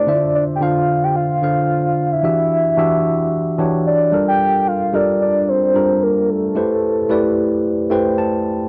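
A soft, octave-layered synth lead and a tine electric piano open this late-night amapiano fragment together, setting a hypnotic mood over a lightly swung 4/4 groove. The synth carries the melody up front with a full, round, dark tone that blends triangle, sawtooth and sine with a sub octave, its fast attack and sustained notes shimmering with chorus, tremolo and vibrato. Beneath it, the worn, slightly out-of-tune electric piano plays clean accompaniment through a combo amp, its phaser adding gentle motion as the harmony moves through Dm9, Em9, Gm9 and Am9. The lead stops at 7.9 seconds, and the electric piano closes the piece with a short fill from 7.6 to 8.7 seconds. The sound is dry and gritty, with a light digital ambience and a dull, tape-worn top end that gives this cut from a longer piece its warm, lo-fi character.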